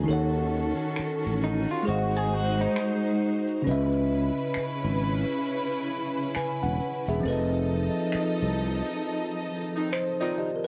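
A bell-like, clean tine electric piano and a lush, woody bowed string section open this sensual, relaxed neo-soul R&B piece, carried by a growly, up-front fretless bass and a compressed, saturated bed of tube shaker and finger snaps with a swung sixteenth-note feel. A dark, slightly broken-up electric guitar adds a brief lo-fi second line from 1.4 to 3.6 seconds, the bass stops at 8.8 seconds, and a tight pop-style horn section plays stabs near the close during a band accent over the F7#11 chord. The home cassette recording gives the keys, strings, guitar and horns a tape-worn character, set in a small room with light reverb.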